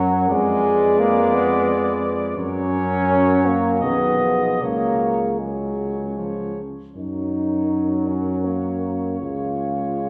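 From the start, a brass band plays together in a lyrical, hymn-like classical excerpt in F# major, moving in an unhurried 3/4 at about 74-89 BPM with a rubato feel. A warm, distant flugelhorn carries the melody over a mellow French horn section in the background, a bright, punchy trombone, a soft-attack euphonium sitting up front, and a roomy tuba anchoring the bass, with every part touched by light vibrato. Heard from further back in a reverberant concert hall, the harmony opens on an Fdim7 at 0.3 seconds, then moves through F#, G#m/B and C#sus4 before alternating between F# and C# chords.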